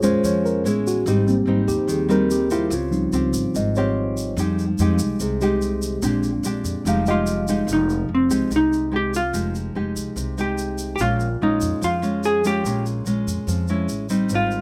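A worn, slightly out-of-tune tine electric piano takes a mellow solo up front until 7.7 seconds in this smooth, melancholic bossa nova in F minor at 145 BPM, backed by full-bodied, fingerpicked nylon-string guitar with audible finger squeak, woody pizzicato upright bass and a grainy tube shaker, before a dark, clean hollow-body jazz guitar with slapback echo carries the melody from 7.1 seconds in a dry outdoor sound.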